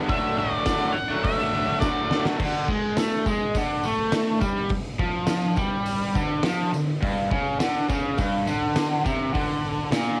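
A bright, overdriven, double-tracked garage guitar riff opens this rowdy, swaggering garage rock cut at 104 BPM, joined at once by a punchy, up-front, low-tuned drum kit with a fat snare and dark cymbals in a pumping stone room and by a shadowy octave-fuzz lead that stops at 2.2 seconds as a drum fill carries the riff from D to D5 and later G5, while a jingly tambourine sits in the background from 0.7 seconds, the guitars and drums colored by home cassette tape under light reverb.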